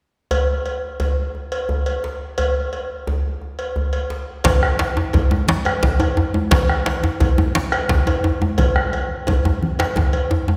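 West African traditional drum ensemble music in 12/8, powerful and festive, cut from a longer piece and set in a reverberant hall. A distant, metallic cowbell and a tight, cracking djembe, compressed and saturated in the background, open the passage before a second djembe, up front and close with hard hands, joins thick-skinned congas at 4.4 s. A deep, dark bombo with a vintage, band-limited sound follows at 4.5 s.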